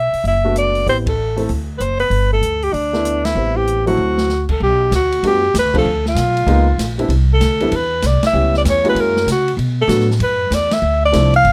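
A swinging 4/4 groove carries this playful small-group jazz excerpt, with band accents punctuating the phrases and a brief drum fill at 4.0 seconds leading into a new section at 4.6 seconds. Up front, a breathy, whispered alto saxophone with light vibrato and a soft subtone attack carries the melody over a woody, growly pizzicato upright bass. Behind them, a mellow baby grand piano with audible action noise comps in short, dark chords, and an open acoustic drum kit adds dark cymbals, a boomy kick and rim clicks, all captured closely in an intimate, dry room.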